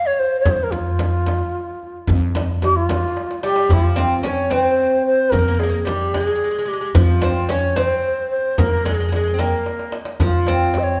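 This recording sits in a resonant church or concert hall, where a long, wet reverb lends an Arabic maqam ensemble a spacious, mournful glow in this short cut from a longer piece. Over a 6/8 pulse, a low ney carries the melancholic, longing melody up front, breathy and reedy, with vibrato and tongued notes, though its sound also feels somewhat distant. Upright bass holds a dark, woody pizzicato F2 beneath, while a darbuka with a deep, compressed, saturated clay-shell tone and a close, dry frame drum played with soft hands sit in the background. An oud joins at 3.4 s with a bright, plectrum-plucked second line on its double strings as the music passes into its second section. Drum fills arrive at 3.2 s, ahead of that shift, and again at 9.7 s.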